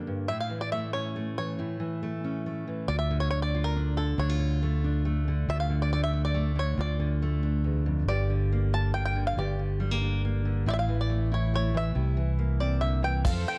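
In a straight 3/4 at 139 BPM, this yearning, bittersweet indie folk piece in D harmonic minor opens with a dark, fingerpicked steel-string acoustic guitar up front, joined almost at once by a bright, twangy bluegrass banjo carrying the melody in its upper register. At 2.9 seconds a round, amped fingered electric bass arrives up front, grounding the harmony as it moves through Dm, Gm, A5 and C7. The arrangement builds at 13.3 seconds, when a shimmering, octave-doubled twelve-string acoustic guitar with analog chorus, a soft brush drum kit with a punchy kick and crash cymbal, and a grainy, very quiet tube shaker all enter just as this cut from a longer piece ends. Light reverb and small room ambience frame a dark production.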